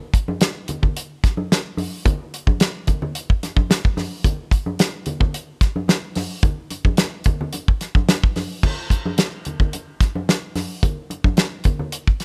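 A straight 4/4 funk groove at 110 BPM drives this playful, gritty fragment from a longer piece. Up front, a dry, damped 70s acoustic drum kit lays down a tight kick, fat snare, hi-hat and crash cymbal. Low-tuned, ringing congas sit close and quieter beneath it, with the passage shifting into a new section at 8.6 seconds in a nearly reverb-free room.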